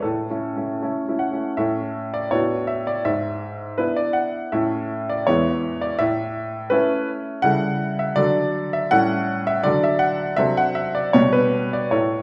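This classical-period piano sonatina is cheerful and playful, a short passage cut from a longer piece that runs about 12.2 seconds. A clear grand piano plays solo throughout, present and up front, spanning from the low register up into the upper middle of the keyboard. The pulse in 2/4 is shaped with rubato, so the beats fall unevenly and the phrasing breathes freely. The harmony moves through bright, simple cadential progressions, and from 7.5 seconds it turns toward a fresh tonal centre with dominant-seventh colour leading it onward. The instrument sits in a wet recital hall reverb with a gentle, rounded top end, giving the sound the airy bloom of a church or concert hall.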